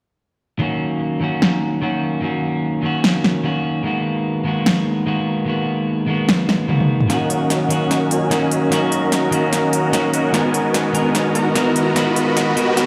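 A huge, detuned supersaw riff enters at 7.1 seconds, its sawtooth unison chords full-bodied and lush, shaped by a low-pass filter sweep and digital delay as the piece moves into a build-up. This is a bittersweet, dreamy future bass passage at 148 BPM in Eb minor, felt in half-time with a light swing on the sixteenths, and cut from a longer piece. A picked electric guitar at the edge of break-up opens the passage, warm, slightly broken-up, compressed and up front, with a subtle chorus and digital delay over Ebm7 and Abm9 chords. A big-room electronic drum kit joins at 1.4 seconds, layered and overdriven, with a punchy filtered snare, crisp hats and toms, and a fill leading into the second section. A very quiet riser slips in at 10.6 seconds beneath the build, while a moderate hall reverb and the sound of a big system in a bare room give the whole passage a spacious, roomy sheen.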